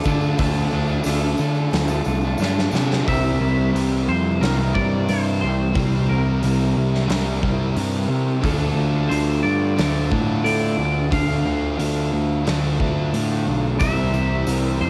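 Dreamy and brooding, this short cut of shoegaze-tinged dream pop rock rides a Dm to C7 cycle, with a twangy clean guitar singing the melody through vibrato and tape echo above a haze of background riffing. Two compressed overdriven guitars, one shimmering with subtle chorus and one smeared by reverse reverb, blend with a biting double-tracked guitar, while an up-front fuzz bass growls underneath. A huge arena drum kit with a punchy kick and natural big-room sound lands a fill at 2.4 seconds, a jingly tambourine glints at the edges, and everything sits in the small-room ambience of a home cassette recording.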